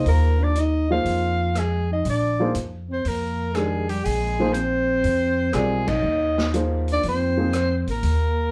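Modal jazz with an open, spiritual mood, this short excerpt, cut from a longer piece, swings at an easy medium pace over a single suspended Bb chord. A breathy soprano saxophone carries the melody up front with a soft attack, mellow vibrato and a whispered, intimate tone, while a dark trombone plays a smooth-topped, forceful second line beneath it. A dark grand piano with short sustain accompanies until about 7.5 seconds, and a woody, thumpy upright bass with gut strings sits prominently underneath. A vintage drum kit, set lower in the mix, adds hi-hat, ride, rim clicks, snare and a punchy kick with dark, rolled-off cymbals. The band hits an accent together at 5.8 seconds, and a roomy studio ambience places the whole group a little further back.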